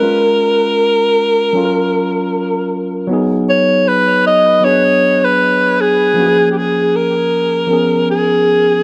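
A breathy alto saxophone and a mellow tine electric piano begin together in this short, romantic reggae excerpt, both sitting up front in the mix. The saxophone carries the melody in a whispered, intimate pop style, with a soft attack, gentle vibrato and a smooth top, and a tape echo trails its phrases. Beneath it, the electric piano plays a clean accompaniment through a combo amp, its tone warm and rounded. The unhurried groove has a light swing, and the harmony moves through A#m7, F#maj7, G#m7 and Bm6 before returning to A#m7 and closing on C#7. A moderate plate reverb gives the whole passage a smooth, enveloping space until both parts end at 8.8 seconds.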